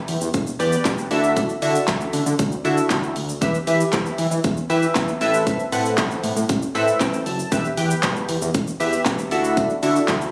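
Confident yet bittersweet, this dance-pop excerpt moves at 117 BPM in E minor, with chorused retro synth keys up front in a glossy blend of pulse, sawtooth and sine tones with pulse-width modulation, a filter sweep and sidechain pumping, adding a short fill at 6.5 seconds over chords cycling through Em, Dadd9 and Amadd9. Beneath them, a fat, thick analog bass with detuned sawtooth tone also pumps with the sidechain, while an electronic, layered pop drum kit, re-recorded in a small room, sits up front with a punchy kick, fat snare, hi-hat, handclaps and shaker. The mix carries a touch of light reverb and compression, with the sound of a phone recording made in the room.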